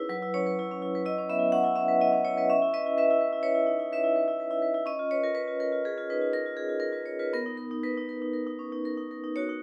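Uneven beats in 5/4 at 125 BPM, stretched with rubato, carry this playful, flowing fragment of a contemporary classical piece for solo vibraphone, whose bright, ringing tone, struck with medium hard mallets and shimmering with slow motor vibrato, sits up front in light reverb as the harmony moves through F#7sus4, C#m7 and C#9 to Bmaj7 over 9.6 seconds.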